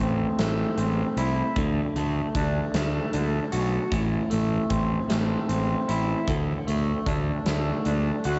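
This brooding piece of quiet-loud alternative rock has the hazy, band-limited sound of a home cassette recording, with light reverb and a small room ambience, and it is cut from a longer piece. At a slow 51 BPM in a straight 6/8 and in A dorian, the three parts play together through the whole 8.4 seconds, moving from Am to D, back to Am at 3.9 seconds, and landing on D5 at 6.3 seconds. Up front, an electric guitar through a small old amp picks bright, twangy, slightly broken-up arpeggios from A2 to F#4, dressed in lush chorus, analog delay and cassette tape coloring. Beneath it, a fingered electric bass sits equally forward with a dark, round fuzz and overdrive, holding low between A1 and D2. Set lower in the mix, a huge arena drum kit with a pumping hall sound, punchy kick, medium-tuned snare and hi-hat carries its own cassette tape grit, giving the brooding mood a cathartic weight.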